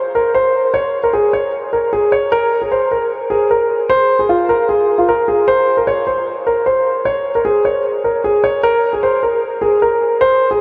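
Hip hop in Bb minor at 152 BPM with a half-time feel, this dark, hard-hitting fragment from a longer piece features a solo concert grand piano, mellow and vintage in tone with deep bass, sitting up front between F4 and Db5 from 0.1 to 10.6 seconds, its notes trailed by analog delay and drenched in a huge, dreamy reverb that lingers for 8.2 seconds.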